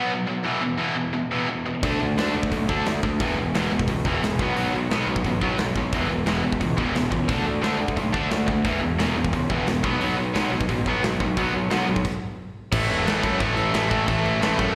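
A tight, double-tracked distorted guitar opens alone with an up-front power-chord riff through slapback echo, cycling E5, D5 and B5 in rowdy, energetic punk rock at 176 BPM. At 1.8 seconds a growly, fuzz-soaked picked bass and a big acoustic rock kit with a punchy kick, medium-tuned snare, hi-hat and bright crashes join. The whole band halts at 12.0 seconds before a closing A5 section, all heard as a live gig through the venue's PA with recital hall reverb, in a fragment cut from a longer piece.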